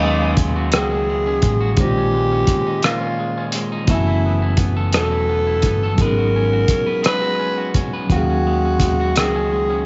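Slow six-eight R&B in Eb minor at 57 BPM, this late-night, sultry excerpt is cut from a longer piece and moves through lush minor eleventh chords, from Ebm11 through Bbm11, Gbm11 and Abm11 before returning home. A growling tenor saxophone carries the melody up front, dark and breathy with subtone, scooped notes, vibrato and a raspy grit, its sound coloured by cassette tape. Beneath it, an electric guitar at the edge of break-up picks a twangy second line bathed in spring reverb, while a mellow tine electric piano supplies clean accompaniment through its built-in speakers. A fretless electric bass adds a round, amped low end with subtle chorus, and a cloth-damped, thuddy drum kit enters at 0.4 seconds with hi-hat, tight kick and rim click, muffled and saturated with a rolled-off top. The home cassette recording is dry and dusky, its highs capped at 7.8 kHz, giving the whole a close, lo-fi intimacy.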